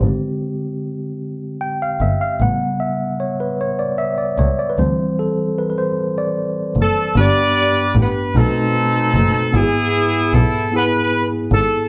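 A slow 6/8 pulse at 50 beats per minute, counted in dotted quarters with a straight feel, carries this uplifting, jubilant gospel passage cut from a longer piece and tuned slightly below standard pitch at A4 = 435 Hz. A mellow, clean tine electric piano sits up front through its built-in speakers, holding the accompaniment for the full 11.9 seconds and featured in a solo until 7.2 seconds over rich harmonies such as Fm69 and D9sus4. Beneath it, a single bowed double bass plays con sordino, dark and veiled, with vibrato and portamento in a low register. At 6.8 seconds a warm horn section enters with the melody, an ensemble in pop style with light vibrato and a roomy character, shortly before the music moves into a second section on G, B7b9 and E/G#. Light reverb and a small room ambience frame the whole performance.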